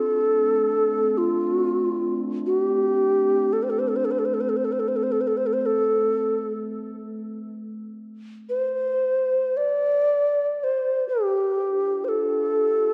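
Floating in free time with a meditative, unmeasured pulse, this brief 12.9-second fragment of calm, spacious world music is tuned to A4 = 436 Hz. A low, mellow Native American-style wooden flute carries the melody from start to finish, its airy, woody tone colored by gentle vibrato and a crisp chiff on each attack. Close-miked and up front, the flute trails off into a diffuse ambient delay. Beneath it, a glass harmonica sustains a softer texture throughout, its pure, ethereal tones arriving with slow attacks and a faint beating shimmer. A wet concert hall reverb surrounds the scene, while the worn, warbling character of old cassette tape adds a warbly pitch drift.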